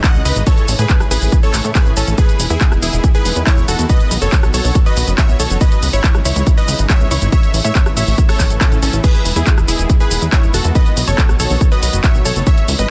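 A dense, heavily limited modern master with little reverb carries this euphoric passage of uplifting trance, part of a drop in E major at 140 BPM in 4/4, tuned to A4 = 439 Hz. A tape-warm, layered kick sits up front as the loudest part. Beside it, a dry analog drum machine supplies crash cymbal, handclaps, hi-hat, rim click and shaker, with its hats, percussion and cymbals pumping under sidechain. From 0.1 s a plucky, funky analog bass blends sawtooth, pulse, sine and triangle waves with wave-folding and tube saturation, its fast-attack filter pluck decaying between E1 and A2 as it pumps. A punchy, detuned supersaw stab carries the melody from C#4 to F#5 with a filter sweep, delay and sidechain pumping, while a lush, bright supersaw pad holds slow-attack chords in the background with a long release as the harmony moves through A, Emaj7, B and C#madd9.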